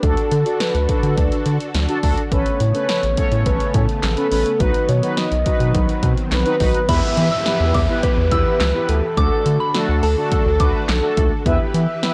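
Synth-pop in E dorian at 105 BPM, this cool, nocturnal cut from a longer piece moves in a straight 4/4 over chords from D through Aadd9 and B before settling on Em. A horn-like, warbling lead carries the melody from the start, its sawtooth tone softened by chorus, vibrato and tape echo, while mellow synth brass with a detuned, brassy edge fills out the accompaniment. Behind them, a vintage string machine voicing violas holds slow-attack chords under ensemble chorus, and a round, deep square-and-sine bass with a plucked filter sits low until 11.9 seconds. A punchy analog drum machine stays up front with kick, snare, handclaps, hi-hat and crash, its snare, clap and hats carrying a short room sound. A background swell and downlifter enters at 6.0 seconds, and from 6.9 seconds a soft, pure FM bell adds a second line in the background through chorus, phaser and tape echo. The mix is dry and gritty, with the character of cassette tape.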